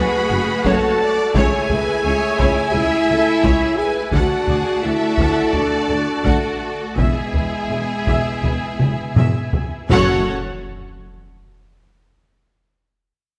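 Over an uneven 4/4 pulse, heavy-sticked taiko drums enter at 0.6 s beneath a heroic, brooding orchestral film cue cut from a longer piece, where a clear, distant violin melody and a second violin line in the background ride a lush viola accompaniment and studio string and sombre French horn chords above a bass of double basses, very quiet cellos and a mellow tuba, all moving from F#m through C#m, D and E in a reverberant scoring-stage space until a drum fill at 8.8 s gives way to a huge, dark impact at 10.0 s.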